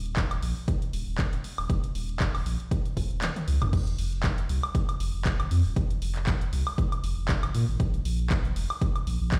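A 4/4 groove at 118 BPM with a 55% swing on the sixteenths drives this warm, deep slice of deep house in F minor, cut from a longer piece. The sub bass is round and sine-pure, with a fast attack and sustained notes ranging from Eb1 to Bb2. It sits up front and pumps under sidechain compression. An up-front electronic kick with an analog character hits hard, and an overdriven analog drum machine adds crash cymbal, handclaps, hi-hat, toms and woodblock, with both drum parts carrying that same gritty drive. At 3.2 seconds the kick drops out for a drum fill, then the drop arrives at 3.7 seconds and carries the track to its close. The mix is fairly dry, with little reverb beyond the stony echo of a big sound system playing in a bare room.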